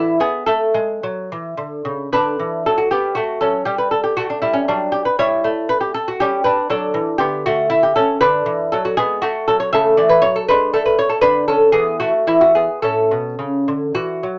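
A moderate studio ambience surrounds a single up-front lute, its gut and double strings, some doubled at the octave, giving a mellow, delicate, fingerpicked tone. This short excerpt is a flowing, serene baroque-style dance in 3/4, moving with a rubato feel at around 106-120 BPM, ranging from A2 to E5. It opens in D major through chords such as Gmaj9 and A7/G, then settles into A major from 8.2 seconds, closing on an A chord at 12.8 seconds.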